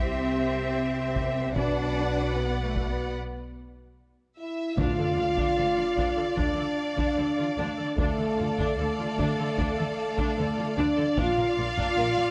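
Cinematic, epic orchestral film score at 75 BPM in 4/4, dramatic and heroic in mood, moving from B phrygian into D minor at 4.8 seconds. A lush violin section carries the expressive, vibrato-rich melody while a second, more focused violin line sits alongside it, with an intense viola section filling the accompaniment and distant cellos and double basses grounding the low end. The French horn section holds present, warm sustained chords and stands out as the loudest voice in the ensemble. Hard-stick taiko drums, close and dry, enter at 1.2 seconds, and after a break and drum fill the music lands on an impact at 4.8 seconds, marked by articulate hard-mallet timpani and a huge, dark sub drop in the background. The harmony shifts from C and Bm to D minor and finally Bb, all set in a moderate scoring stage reverb in this cut from a longer piece.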